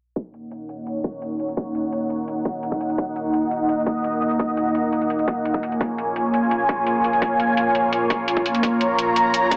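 Lush and soulful, this liquid drum and bass fragment centres on a thick, bright unison pad of detuned sawtooth and square waves with a sub octave, its slow-attack chords carrying chorus, phaser and sidechain pumping as they move from Ebm7 to Bbm7 at 5.6 s. A tight, up-front electronic kick and metallic hi-hats, both re-recorded in a small room, run beneath it from 0.2 s, with filter sweeps on the drums and the pad. The mix sits in a wet recital-hall reverb with a low-passed, small-speaker sound.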